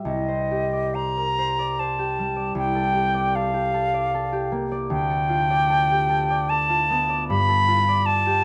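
A silver concert flute and a concert harp begin together in this wistful, mysterious impressionist duo, moving at a rubato 77 BPM in 3/4. The flute carries the melody up front with an airy, vibrato-touched tone and soft attack, while the fingerpicked harp rings beneath it in accompaniment, drifting through Cmadd9, Gm9/C, Dm6 and G9. Light reverb and a dark, warm production give the 8.4-second fragment, cut from a longer piece, a hushed intimacy.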